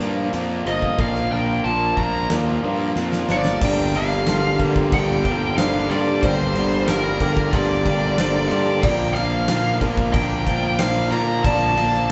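The recording sounds like a band playing live together in one stone room, with a wet reverb hanging in the air and a softened top end. This cathartic, cinematic post-rock passage is cut from a longer piece, set in G minor at 92 BPM in a straight 4/4, and moves from Bb to Gm7 and then to Bbmaj7. A huge arena drum kit with a fat snare and punchy kick drives a build-up through the opening, capped by a fill from 3.0 to 3.6 seconds. A growly fuzz bass sits up front beneath two overdriven rhythm guitars playing riffs in the background, one of them raw and garage-like with spring reverb. A felt-muted upright piano adds mellow, intimate arpeggios with audible action noise, while a very quiet, twangy clean guitar traces arpeggios until 8.8 seconds. Above them, a bluesy lead guitar, dark and distorted, carries the melody from 0.7 seconds onward.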